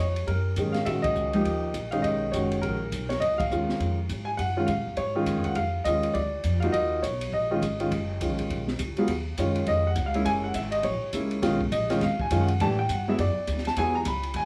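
Jazz piano trio in Eb minor, swinging briskly at 205 BPM with a late-night mood, heard as a short cut from a longer piece. A clear, up-front grand piano carries the melody with audible action noise, over a woody, thumpy pizzicato upright bass on gut strings and a compact cocktail drum kit with a high-tuned snare, punchy kick and rolled-off top sitting low in the mix under light reverb. The band hits accents at 1.0 and 3.4 seconds, and a new section from 9.1 seconds moves the harmony through Gb7, Bmaj7 and Emaj7.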